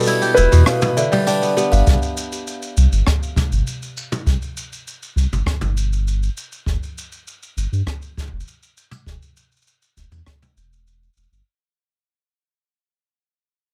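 A hopeful, playful folktronica excerpt at 100 BPM opens over Em and G with a felt-muted upright piano carrying a soft, intimate melody with audible action noise, a delicate, slightly out-of-tune music box second line and crisp, ringing fingerpicked kora arpeggios, these three bathed in plate reverb and tape echo above airy jazz brush drums, before a round sine sub bass enters at 0.4 s and a boomy, up-front kick arrives at 1.9 s as the piece fades out.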